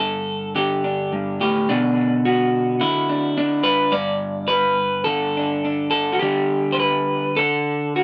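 Hopeful and peaceful, this short folk fragment cut from a longer piece sets a lone electric guitar through a small old amp, bright, twangy and slightly broken-up, up front in light reverb, picking a loose, rubato line in G major around 105 BPM from G5 through Bm, Gsus2 and Dsus4 before the chords drop away at 7.4 seconds.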